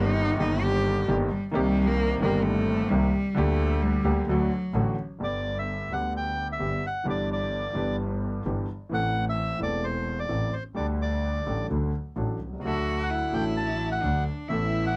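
A rich, expressive bowed cello with vibrato and portamento carries the opening of this elegant, nostalgic rubato tango at 130 BPM, over an intimate concert grand piano with deep bass and audible action noise and a focused bowed double bass, until a reedy, vintage-toned bandoneon takes the melody at 5.2 seconds and the cello returns at 12.6 seconds, all in a dry, close 1970s-style studio sound with light reverb, cut from a longer piece.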